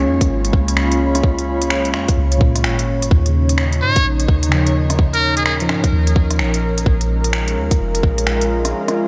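This future garage excerpt drifts in a ghostly, rainy mood, with a swung 16th-note shuffle and a veil of vinyl crackle under a huge ambient reverb. An airy, breathy pad holds sustained chords with a chorus shimmer, pumping against the sidechain, while muted, felt-like synth keys sit dark and intimate in the background, trailing dub echoes. A soft, round 808-style bass supplies deep, decaying low end, and a tight, tape-warm electronic kick sits up front. An organic electronic kit adds finger snaps, crisp hi-hats and rim clicks, re-recorded in a large room. At 3.8 seconds a trumpet with a metal mute steps forward for a brief jazz-style solo, its buzzy, thin tone carrying light vibrato and dub echo before it drops out at 5.5 seconds.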